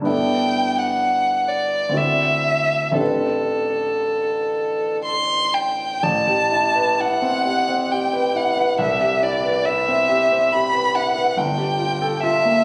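Captured on a phone in a resonant recital hall with added club reverb and compression, this hazy, mysterious excerpt from an impressionist classical duo drifts in a rubato 3/4 at 56-71 BPM in A dorian, where a woody, soft-attacked bowed violin sings the melody up front with vibrato over a clear, intimate grand piano accompaniment whose action noise is audible, moving through chords such as G69, Am11 and Cmaj7 before reaching Gm9 at 11.4 seconds.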